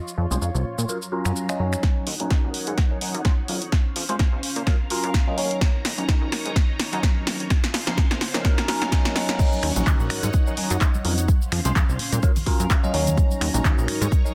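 Funky and nostalgic, this filtered disco house excerpt moves at 127 BPM in Eb dorian with a 16th-note swing, cycling through Dbmaj7, Gbmaj7 and Ebm7 as a lush, vintage string machine holds sustained chords through phaser, ensemble chorus, sidechain pumping and a low-pass filter. A plucky, sawtooth-edged analog bass and a bell-like, clean tine electric piano join almost at once, alongside a tape-tinged analog drum machine with a punchy snare, handclaps, finger snaps, hi-hat, cabasa and crash. A layered, up-front electronic kick arrives at 1.8 seconds to launch a build-up with a drum fill and filter sweep, and at the drop at 9.4 seconds very quiet, close egg shaker and congas enter, all under light digital ambience and a dense, heavily limited master.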